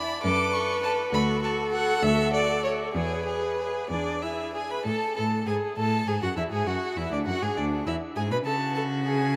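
Bathed in the long, echoing reverb of a vast cathedral, this cheerful, graceful classical-period string quartet movement in a rubato 6/8 sets a rich, up-front first violin singing the melody with vibrato and a smooth top over a second violin's focused inner line, a close, clear viola accompaniment and a bowed cello bass, the four parts playing throughout as the harmony moves from F#m through D and E toward a closing F#madd9/C#.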